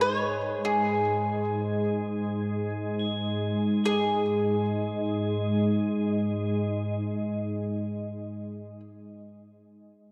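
A worn, warbling cassette-tape sound with pitch drift hangs over this short cut from a longer piece, set in a wet church reverb that lets every note linger. It is meditative world music in free time, spacious and unhurried. Up front, a picked bowl-back mandolin carries the melody, its doubled strings giving a warm acoustic voice as it moves between G#4 and C#5. Beside it, an organ-like drone holds low and steady from G#2 to G#3, a calm, detuned sine tone with a slow attack and long release, thickened by ensemble chorus and its own reverb. In the background, soft crotales struck with hard rubber mallets add an airy, shimmering high G#7. All three parts sound throughout the 8.8 seconds, with the music shifting into a new passage at 3.8 seconds.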